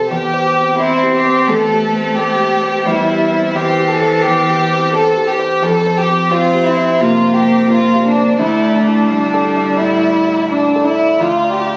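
Neoclassical piano and strings in a hopeful, intimate mood, moving at a rubato 86 BPM in 4/4 and tuned to A4 = 435 Hz. An up-front chamber violin section carries the melody with a soft sul tasto attack and light vibrato, while a clear concert grand piano with deep, natural bass accompanies, and a single close cello, airy-bowed and warm, adds a second line from 0.8 to 10.9 seconds. The harmony passes through C/E, Fsus2, Dsus2 and a rootless Bb/D, and the phone-in-the-room recording is softened by light studio reverb.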